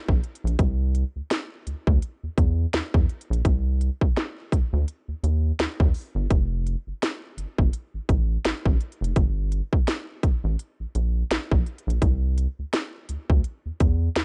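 Dreamy and tender, this short contemporary R&B excerpt moves at an unhurried 84 BPM in 4/4, with a gentle 58% swing on the sixteenths. From 0.1 s to 14.2 s, a trap drum kit and a rubbery square-wave bass carry the whole piece together, both placed up front. The drums are electronic and produced, pairing a hard-clipped kick with a sharp snare and crisp hi-hats, all given a tape-warm tint. The bass sits between F1 and E2, its hollow, wave-folded tone opening with a quick, resonant filter pluck before holding as a dark, bouncy sustain. The recording is dry and worn, like an old cassette, with a warbling pitch drift and a top end that stops at 11.0 kHz, which lends the groove a hazy glow.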